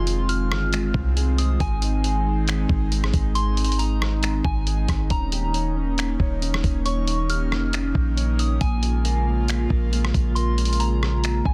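A deep, boomy 808-style bass sits up front, its sine tone striking with a fast attack and then decaying, moving between Eb1 and C2 beneath this spacious, ethereal cloud-rap excerpt at 137 BPM in 4/4 with a half-time feel. From 0.1 s a lo-fi, sampler-style drum kit joins, pitched down and muffled, with a thumpy kick, hi-hat, rim clicks and finger snaps, compressed and placed up front, with soft clipping on the snare. An airy, breathy pad holds sustained chords from Db3 to F4, its triangle and sawtooth layers blended with noise and ring modulation, a slow attack and long release, chorus, and sidechain pumping. High above, a soft synth bell carries the melody from Ab5 to F6 with a pure, gentle FM tone, dressed in chorus, phaser, low-pass filtering and tape echo, while a dark, clean, fingered electric guitar plays arpeggios in the background through lush chorus, a low-pass filter and tape echo. 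The harmony moves through Fm7, Ab, Eb7 and Bbm7, tuned to A4 = 441 Hz, within a digital ambience and a dense, heavily limited modern master.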